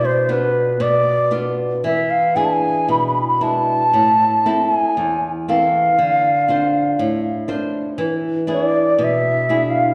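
Tender and nostalgic, this short passage from a longer fado-style ballad moves at a slow, rubato 59 BPM in 2/4, tuned to A4 = 438 Hz. A mellow, airy bansuri sings the melody up front with expressive vibrato and tongued notes, its highs rolled off, while a fingerpicked acoustic flamenco guitar accompanies through Bdim, E7, Am and Dm7 before returning to E7 at 8.0 seconds. Both play throughout in a reverberant church or concert hall, where a wet recital-hall reverb surrounds the pair.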